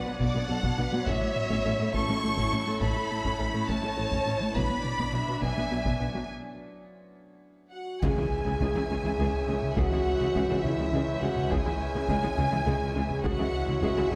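A lush, vibrato-rich violin section carries the melody in this cinematic hybrid orchestral and electronic film cue, with a second, more focused violin line beneath it and dark violas in the background. The mood is futuristic and relentless at 69 BPM in a straight 6/8, set in C# phrygian and moving from Bm to A, back to Bm, then to C#m. Heavy-stick taiko drums drive the music from the opening alongside bowed cellos and distant double basses. An eerie, metallic FM drone with chorus holds sustained chords, while a soft, round, warbling pluck plays arpeggios and a smooth gliding synth bass with portamento runs a riff. After a break at 6.3 seconds and a drum fill, mellow French horns enter at 7.7 seconds. At 8.0 seconds trombones, a tuba, a snarling distorted saw bass and a quiet electronic impact join, all in a moderate scoring-stage reverb.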